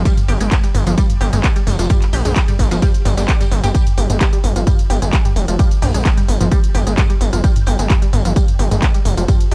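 An overdriven electronic kick sits up front and hits heavy, powering this relentless, dark slice of peak-time techno at 130 BPM in a straight 4/4, set in G phrygian around a G5 chord. Beneath it, a gritty, saturated synth bass built from sawtooth, sine and triangle tones with oscillator sync and ring modulation pumps against the sidechain, its resonant filter pluck giving it an aggressive bite. A tight, driving sequenced synth riff of detuned sawtooth and pulse waves, wave-folded and plucked, runs through chorus, phaser and dub echo, and it also pumps with the sidechain. An overdriven techno drum kit layers smooth hats, handclaps, ride cymbal, tambourine and toms, while a warm soul drum kit with a medium-tuned snare, hi-hat and tambourine sits deep in the background with a rolled-off top. The whole 9.5-second stretch holds one section in a small room with a dark, warm production.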